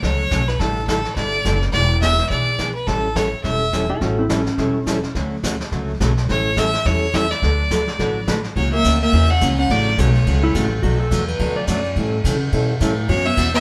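A fast swung 4/4 at 211 BPM drives this cheerful western swing excerpt in D major, where a clear, up-front fiddle carries the melody over bright picked acoustic guitar, woody pizzicato upright bass and a vintage brush kit with dark cymbals, while a clean lap steel slides in with volume swells at 3.9 and 10.4 seconds and a dark hollow-body jazz guitar adds a second line from 8.6 seconds, all in a live room with wet reverb.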